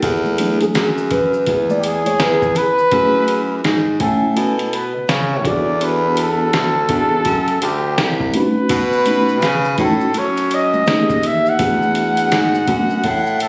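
Smoky and cool, this jazz-hop excerpt from a longer hip hop piece rides a swung groove under a lo-fi haze of vinyl crackle, studio reverb and compression, as if captured on a phone in the room. A mellow tine electric piano, clean and heard through its built-in speakers, carries the accompaniment and takes a solo over the opening seconds, moving through extended chords such as E9sus4, F#m9, Cdim7 and B9. Underneath, a warm baritone saxophone plays the bass line up front, with vibrato and a subtone in a jazz style. A sampler-style drum kit sounds compressed, pitched down and muffled, with a thumpy kick and a medium-tuned snare. A breathy flugelhorn enters at 1.8 seconds with the melody, its soft attack, smooth top and vibrato sitting up front, while bright, close maracas and congas sit in the background, dropping out at 2.9 seconds and returning at 8.7 seconds.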